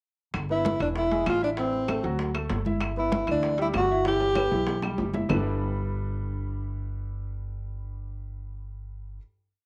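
This lively, danceable Afro-Cuban jazz piece in G major opens at 0.3 seconds with a woody, thumpy upright bass in gut strings playing a pizzicato tumbao that anticipates the chords, set up front over a background of percussion. The congas ring with slaps and open strokes, the tight, high-tuned bongos keep steady eighths alongside a hand bell, the metal-shelled timbales play a shell pattern and bell, and saturated, compressed claves carry a two-bar time line. At a brisk 193 BPM in straight 4/4, a breathy tenor saxophone takes the solo up front, close-miked, shaping a motif-based melody of call phrases with scooped notes, its tone coloured by cassette tape, plate reverb and analog delay. A clear baby grand piano with short sustain plays a montuno in octaves through chords such as G6, Am and Dadd9, also tinted by tape and plate reverb. A drum fill runs from 4.1 seconds, the percussion stops at 5.4 seconds, and bass and piano ring out on a final G69 chord until 9.2 seconds, the whole heard as a homely cassette recording in a wet, short-decay room.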